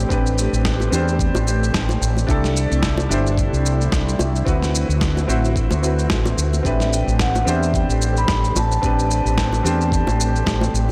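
Sunset chillout with a wistful mood and a lightly swung feel, this short cut from a longer piece rests on a dark, punchy fretless electric bass up front, a clear, worn baby grand piano through analog delay, and a silky string machine with ensemble chorus in the background, over chords moving from Am11 through C69 and D13. A gritty, compressed sampler-style kick thumps in the background while a shaker and medium-tuned snare keep time, and round, low-tuned bongos join at 0.8 seconds. At 6.7 seconds a metallic, ringing vibraphone played with medium hard mallets carries the melody through analog delay, all set in a dry hardware recording with light reverb.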